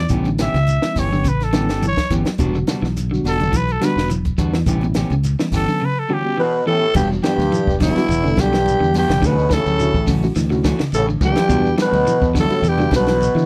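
A dry, close 1970s-style studio sound with small room ambience frames this hypnotic, driving afrobeat excerpt in E dorian at 105 BPM, where a raspy, growling trumpet solos up front over picked guitar arpeggios, a dark fingered bass, a reedy, worn electric piano with fast tremolo, slightly broken-up guitar stabs, a compact cocktail kit with a high-tuned snare and punchy kick, thin-skinned congas and a grainy shekere, until at 6.4 seconds a gritty alto saxophone with scooped notes takes the melody while a tight, brilliant trombone section and a distant plunger-muted trombone add a second line in the background.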